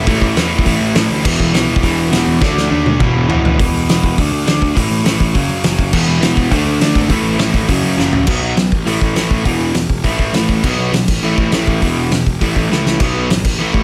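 A roomy, lightly reverberant punk rock excerpt, energetic and upbeat, drives along on a dark overdriven electric guitar riff and a hollow-bodied overdriven semi-hollow guitar that drops out between 3.6 and 5.9 seconds, over a growly fuzz bass and a loose, distant-sounding drum kit with a fat snare, punchy kick and dark cymbals that fills from 2.4 to 3.6 seconds and again at 8.0 and 12.7 seconds as power chords move through the changing sections.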